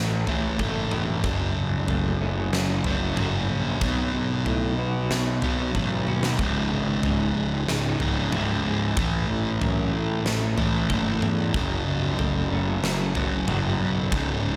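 A sludgy, overdriven guitar sits up front in this dark, brooding fragment of quiet-loud alternative rock, grinding out a picked riff from the very start. Around it, a very quiet, clean twelve-string electric guitar adds bright, twangy, compressed arpeggios. A growly fuzz bass sits in the background and plays the low end. A huge arena drum kit arrives at 0.3 s with a fat snare, punchy kick and toms in a hall-like space, and it marks a short fill at 6.1 s. At 93 BPM in 4/4 with a half-time feel, the passage moves through A, F#m, B and C#m before returning to A and F#m, all under light reverb.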